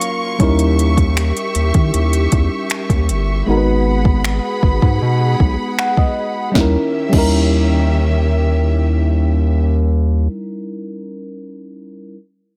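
Late-night and moody, this contemporary R&B excerpt moves at a straight 78 BPM in 4/4, circling Eb7b9 and Abm7 chords in a digital ambience. A soft, dark FM electric piano with chorus carries the accompaniment and plays a fill at 5.4 seconds, while lush, bowed studio strings hold sustained chords with a sidechain pump. A produced, overdriven drum kit with a soft kick, sharp snare, crisp hats, finger snaps and crash drops out at 7.3 seconds, while a deep, wave-folded analog bass stays up front alongside the piano and strings until 10.3 seconds.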